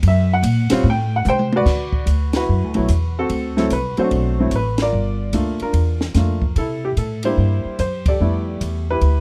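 A clear, slightly detuned upright piano sits up front with a woody tone and short sustain, carrying the melody in this playful, swinging jazz piano trio clip taken from a longer piece. The piano takes a solo through the first 1.7 seconds over F# and Am13 chords, and a drum fill from a compact cocktail kit leads into the next passage, where the harmony moves through D69, D7, Gm7 and C7 before landing on Fmaj9#11. Prominent pizzicato upright bass with steel strings gives the low end a woody, dark presence. The acoustic kit sounds dry, with dark cymbals, a high-tuned snare and a punchy kick, and the band hits accents together at 2.3, 4.7 and 8.0 seconds. Light reverb and a dark, warm production give the trio a playful swing.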